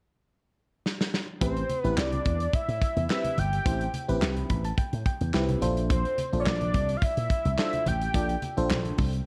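A drum fill at 0.9 seconds opens this slick, late-night early-eighties boogie funk excerpt in A minor at 107 BPM, and at 1.4 seconds a growly, punchy slap bass with an envelope filter, a fat detuned sawtooth lead with a sub octave, a glassy, bell-like FM electric piano with chorus and very quiet close, dry congas join the tight, up-front kit with handclaps over Am9 moving to Bbmaj9, with an electric piano fill from 4.2 seconds, all in a dark production with light reverb and small room ambience.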